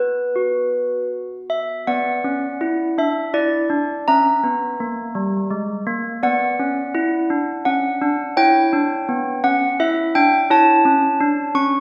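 Clear, ringing handbells carry this short classical tune alone, their medium clappers sounding up front in a wet recital hall that lets each bell-like stroke hang in the air. The mood is wintry and solemn, moving in an unhurried three-beat metre from a lone opening note into a longer passage that settles on minor harmony, touches a diminished chord and comes back before shifting at 10.5 seconds. Cut from a longer piece, it stops at 11.8 seconds.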